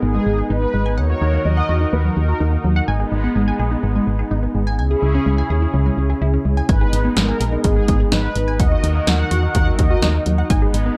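Mellow synth brass sings a dark, vibrato-tinged melody with chorus and tape echo, pausing at 2.6 s and returning at 6.7 s, over a bold, warbling analog pad, lush detuned sawtooth pluck arpeggios with tape echo and a round, up-front FM bass in this melancholic, cool synth-pop excerpt at 126 BPM in G# minor, tuned to A4 = 436 Hz and moving through G#m, D#m and C#m, while a punchy, tape-warm analog drum machine joins at 6.7 s in a small room.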